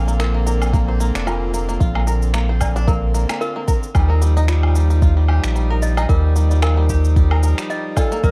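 A lightly swung 4/4 groove at 112 BPM drives this delicate, hopeful folktronica excerpt, with an electronic shaker, finger snaps and woodblock ticking in at 0.1 seconds and a soft, overdriven electronic kick arriving at 0.7 seconds. Underneath, a round sine sub bass sits up front with a fast attack and long sustain, while a reedy, hollow accordion holds sustained chords moving from Bbadd9 to Ebadd9. A bright, twangy bluegrass banjo, played with fingerpicks, spins percussive arpeggios through a delay. Further back, a clanky, bell-like toy piano with wooden hammers and a slightly out-of-tune character adds a second line treated with tape echo. Just before the cut, a warm, classical-style solo clarinet enters at 8.0 seconds with the melody, all set in a small room ambience with a bed of vinyl crackle.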